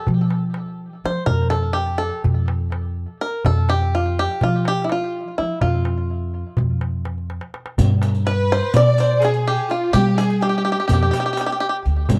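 A bright, twangy banjo played with fingerpicks and touched with tape echo carries the melody up front in this festive excerpt of a Turkish makam ensemble piece, moving at 250 BPM in 9/8 over a woody pizzicato upright bass and a close, clay-shelled darbuka struck with hard hands. After a drum fill, the music shifts from makam rast on F to makam hicaz on G at 7.8 s, where a distant riq with dark jingles joins, and from 8.3 s a lush, bowed symphonic violin section adds a smooth second line rich with vibrato. The production has a warm, shadowy tone with a moderate studio reverb.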